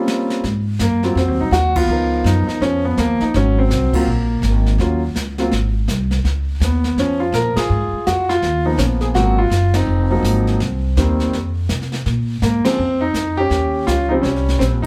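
An up-front concert grand piano with deep bass and a touch of plate reverb carries the melody in this playful, warm jazz piano trio excerpt, swinging at 165 BPM in Ab mixolydian over a woody pizzicato upright bass and a brushed drum kit with dark cymbals and a boomy kick, the band hitting shared accents at 1.7, 7.5 and 12.6 seconds in a moderate club room heard from further back.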